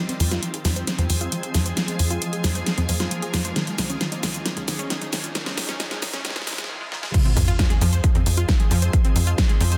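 A shimmering, ethereal pad with an octave-up shimmer and a detuned unison pluck arpeggio under a filter sweep open this emotional, driving uplifting trance excerpt in F minor at 134 BPM, both pumping against the sidechain while a very quiet riser hovers beneath. A big-room drum kit with a huge snare, metallic hats, shaker and crash builds through a fill as a tight, nasal sequencer bass drives the Fm to Dbadd9 progression. At 7.1 seconds the drop lands with an impact and a punchy, up-front electronic kick, all inside a dense, heavily limited master with light reverb.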